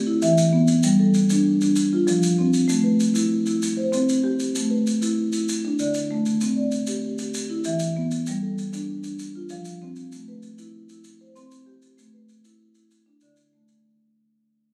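Set in a lilting 12/8 at 129 beats per minute, counted in dotted quarters with a straight feel, this excerpt follows a circling, mbira-style interlocking cycle rooted in southern African traditional music, in C major. A marimba played with soft mallets carries the arpeggios from 0.1 seconds onward, its rosewood bars sounding woody, round and mellow as it sits up front and ranges from D3 to C6. Maracas join at 0.2 seconds, grainy and acoustic, with a compressed, saturated edge that sits well behind the marimba. The mood is rippling and hypnotic, and the cycle keeps returning to the same sequence of notes as the whole excerpt fades out across its 13.8 seconds. Captured on a phone in a recital hall, the sound is bathed in a wet reverb and carries some studio ambience and compression.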